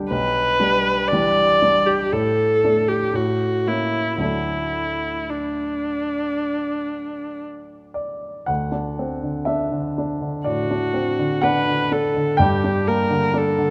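Set in a moderate scoring-stage reverb, this serene, tender romantic classical fragment in D major moves at a rubato 55-63 BPM in 4/4, as a single bowed viola, rich and focused with vibrato and a smooth top, carries the melody up front over a polished, present grand piano accompaniment of short sustain, the harmony passing from Em7/B to D before shifting to D7 at 8.5 seconds and to Gm at 12.4 seconds.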